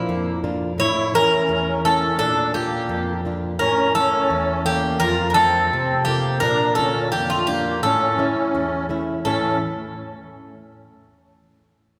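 Greek folk for a bouzouki band, moody and brooding at 85 BPM in 2/4, set in A phrygian dominant, with chords moving among Bb, A and F in a passage cut from a longer piece. The picked bouzouki carries the melody up front, metallic and bright with its double strings and some octave-doubled courses, while a reedy musette accordion with shimmering musette tuning adds a second line in the mids. A fingerpicked flamenco guitar, boxy and bright with audible finger squeak, accompanies up close, and all three play from 0.0 to 9.6 seconds in a wet church reverb with a long tail.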